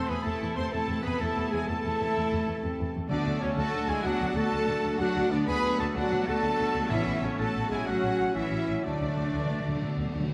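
Warm French horn chords anchor this heroic, soaring cinematic passage in a straight 12/8, where a lush violin section carries the melody over a second, softer violin line, an airy distant flute, a clear oboe and a dark clarinet, while rich violas, focused cellos and chamber double basses fill out the harmony and bass, a punchy close-miked trombone section holds chords beneath roomy trumpet stabs, and background timpani strike at 3.1 seconds before returning at 6.9 seconds and playing a fill at 8.8 seconds, all set in the wet reverb of a scoring stage.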